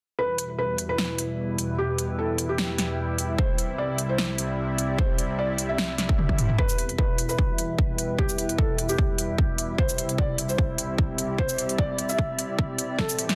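A half-time 4/4 groove at 150 BPM, lightly swung on the 16ths, drives this aggressive, chaotic heavy wobble dubstep cut in E minor, with an overdriven big-room dance kit of punchy snare, crisp hats, shaker and toms up front and an overdriven electronic kick joining at 3.4 seconds. Over a bright, detuned supersaw pad with sidechain pumping, a soft felt-muted upright piano carries the melody through a low-pass filter and digital delay, while a warbling, lo-fi tape-like pad adds nostalgic, chorus-washed texture as the harmony moves between Em and C. Filter sweeps on the supersaw and piano shape a build-up from 6.6 seconds, capped by a drum fill and a barely audible riser at 13.0 seconds in this dense, heavily limited excerpt.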